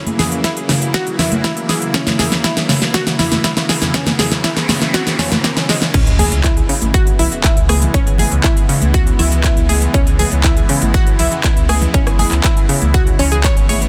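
A punchy, up-front electronic kick drives this dreamy, expansive progressive house piece alongside a big-room dance kit with a huge snare, crisp hats, handclaps, rim clicks and crash cymbal, over background congas and woodblock, a bright, detuned analog pluck playing arpeggios with chorus, digital delay and sidechain pumping, and a morphing wavetable pad of sustained chords with phaser, while a very quiet riser, noise sweep and sub drop shape the build-up until the drop at 5.9 s, where a saturated, thick sub bass enters beneath a dense, heavily limited master.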